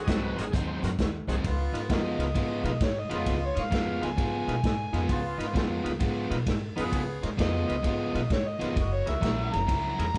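Laid-back and gritty, this electric blues shuffle swings easily in 4/4, heard as a short cut from a longer piece. A bright, shouting tonewheel organ with a slow rotary speaker and light overdrive fills in the harmony, while a clear, close-miked horn section adds loose jazz-style stabs with light vibrato until 9.3 seconds. Underneath, a woody, growly upright bass plucked on steel strings pairs with a muffled, lo-fi vintage drum kit whose tight kick, medium-tuned snare, hi-hat and ride sit up front, and an overdriven electric guitar picks a riff alongside them. At 1.9 seconds an amplified, overdriven harmonica enters with a jazz-style solo full of scooped notes, tongue slaps and light vibrato, trailed by tape echo. The chords move from Ab7 to Db7 and then to Gb7 near the end, and the whole band plays live in one room with a moderate studio ambience and a softened top end.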